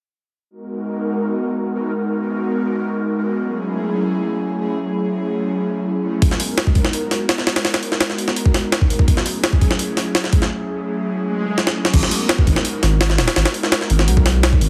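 An airy, breathy pad leads this dark, atmospheric drum and bass excerpt in a jungle style, entering at 0.6 seconds with soft, detuned sustained chords. The pad has a mellow glow, thickened by chorus and a noise layer, with a moving notch and long release. The chords alternate between G#m9 and F#m9. At 6.2 seconds a gritty, sampler-style jungle kit arrives up front, pitched up and compressed, with a thumpy kick, a high-tuned snare, hi-hat and crash cymbal set in studio reverb. After a short break, an electronic swell sits in the background as a drum fill leads into the drop at 11.9 seconds, where a deep, thick, saturated sine sub bass takes over the low end. The whole mix carries a heavily compressed, radio-like sound in a moderate digital room reverb.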